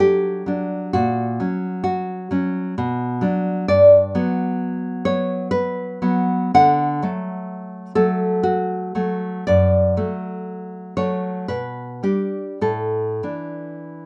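A lone nylon-string guitar opens on a rootless B minor chord, fingerpicked and placed up front with a dark, deep classical tone. This romantic solo piece sits in D major and 3/4 time, moving with a free rubato feel at roughly 49-67 BPM, and the guitar is tuned slightly low to A4 = 437 Hz. The harmony passes through F#/A#, B minor and Gmaj7 before settling into a sunny stretch on D, then D/F#, G/B and a suspended Asus4 near 12.6 seconds. The guitar covers a span from F#2 up to F#5, and light reverb surrounds the acoustic sound. The rough home demo mix gives the 14.1-second passage, cut from a longer piece, an intimate, unpolished character with a warm mood.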